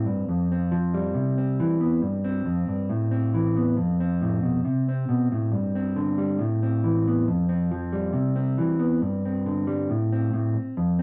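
A straight 4/4 pulse at 137 BPM drives this short highlife excerpt, cut from a longer piece, and its sunny, danceable mood comes through even with a single instrument. A mellow electric guitar plays alone for the full 11 seconds, its clean, fingered tone leaning dark and sitting up front in the mix. It ranges from F2 to C4, moving through a cycle of chords that opens on Fsus2 and Cmaj7 before passing through Gsus4 and Amadd9. The progression returns to Fsus2 and Cmaj7 around 7.3 seconds and settles on a plain Am at 9.9 seconds. A moderate studio reverb lends the guitar a gentle sense of space.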